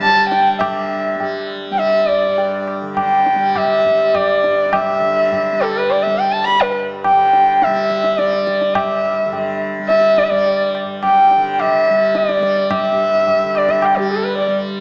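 Radiant and meditative, this Hindustani classical passage, cut from a longer piece, moves in a straight seven-beat cycle at around 104 BPM and gradually speeds up across its 14.8 seconds. A single bowed sarangi carries the melody up front, its dark, woody voice gliding between notes with portamento, a light vibrato, a soft attack and the halo of its sympathetic strings. Beneath it, a tanpura sounds a bright, buzzing drone, softly plucked and shimmering, sitting well back in the balance. A low-tuned tabla adds ringing acoustic strokes that feel close and dry, also set low under the melody. All three instruments play together from start to finish, placed in a moderate concert hall reverb yet heard through a small-speaker quality.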